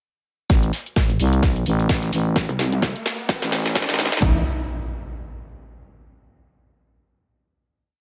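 A growling, thick FM bass drives this short, bouncy and gritty bass house piece in A minor at 129 BPM, pumping against a punchy four-on-the-floor kick with toms and a cracking snare with programmed hats from two layered, tape-warm house kits, while a very quiet looped sampler breakbeat adds edits underneath, a detuned, saturated pluck wobble bass with chorus answers between 1.0 and 2.9 seconds, and a riser and impact ride the build, drum fill and filter sweep into a final note at 4.2 seconds under light reverb.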